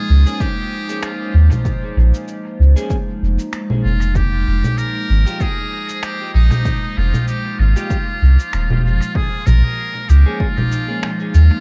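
From the start, a distant, buzzy muted trumpet carries the melody over a warbling, nostalgic pad with chorus and phaser, while a deep, round sub bass sits up front, a clean, dark guitar adds background stabs with dub echo, a punchy overdriven electronic kick and muffled, pitched-down cabasa, finger snaps and congas set a swung 96 BPM groove, and the chords move from Bbm7 to Fmadd9 and back to Bbm7 at 9.2 seconds in this meditative, spacious ambient dub excerpt with a cassette home-recording feel.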